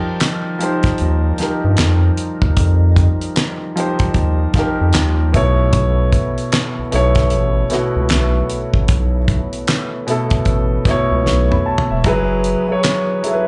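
Late-night and soulful, this neo-soul R&B groove sets a clear, intimate concert grand piano with slapback echo and audible action noise over faintly overdriven tonewheel organ chords with key click and slow rotary. A dry, damped 70s kit with a fat snare, tight kick, hi-hat, toms and handclaps fills at 11.3 s, beside a round, deep analog bass. A hollow, woody clarinet-like synth lead with chorus and vibrato slips in at 13.3 s as the chords move from F9sus4 through B9sus4 to F#9sus4, all heard as a live club gig through the venue's PA.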